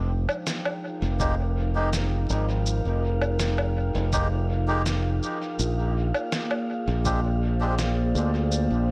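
A straight 4/4 groove at 82 BPM opens this spacious, meditative ambient dub excerpt in F dorian, where a bright, up-front fingered electric bass anchors Fm11 before the harmony moves to Bb13 at 5.6 seconds. A warbling, detuned tape-like pad holds sustained chords through chorus and its own reverb, an airy wind-like tuned noise texture sits in the background, and muffled, pitched-down electronic woodblock, snare and shaker carry dub echo, joined from 1.2 seconds by a thumpy kick set in the background. Reedy, nasal melodica stabs also enter at 1.2 seconds, trailing their own dub echo through a lightly reverberant room.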